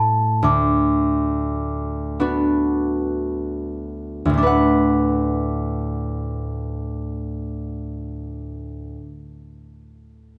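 A tender, wistful Celtic folk slow air in D major, this excerpt moves in a rubato 6/8 at about 25-37 BPM counted in dotted quarters, slowing down over its first 4.4 seconds. A large celesta carries the melody high between A5 and D6, touching D6 at 0.4 seconds, its delicate, bell-like, sweet tone struck with hard felt hammers and heard in a boxy small room. Beneath it, an up-front, fingerpicked concert harp accompanies from D2 to F#5 with a warm, ringing voice, and close, detailed microphones with light reverb carry the piece through two short sections.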